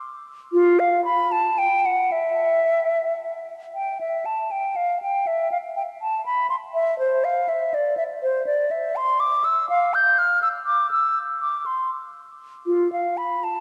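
A mellow, hollow silver concert flute plays alone from 0.5 to 13.6 seconds, its pure tone carrying vibrato and tongued notes, sitting up front as it ranges from F4 to G6. This baroque-style classical fantasia moves in a rubato, dance-like 6/8 with a serene mood, a phrase heard once and then begun again at 3.8 seconds. A long cathedral reverb and a dark production surround the flute in this fragment cut from a longer piece.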